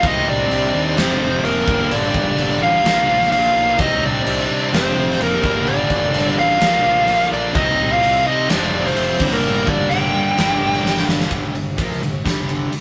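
A rough rehearsal-room recording with moderate reverb captures a heavy, aggressive hard rock cut in G minor at 128 BPM, where an up-front, dark and smooth overdriven lead guitar carries the melody over a bluesy distorted second lead set in the background, both stopping at 11.0 s, while a bright, double-tracked overdriven guitar and a high-gain distorted guitar further back drive riffs through a Cm–F–Gm–Bb cycle, anchored by a round, fuzzy fingered bass and a huge acoustic arena drum kit with a punchy kick and medium-tuned snare that plays a fill at 10.8 s.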